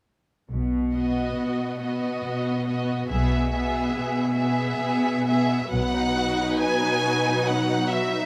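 Bowed double basses and cellos open at 0.5 s on a low B, the basses clear and intense and the cellos a touch distant, before violas fill in with an even, smooth accompaniment and two violin sections enter: an expressive, vibrato-rich melody up front over a focused second line. This tender classical movement for string orchestra in B major sways in a rubato 3/4 at roughly 62-72 BPM, captured with close, detailed microphones and light reverb. A new section begins at 5.7 s, the basses drop out at 6.6 s, and the cellos and lush upper strings carry on to the end of this fragment of a longer piece.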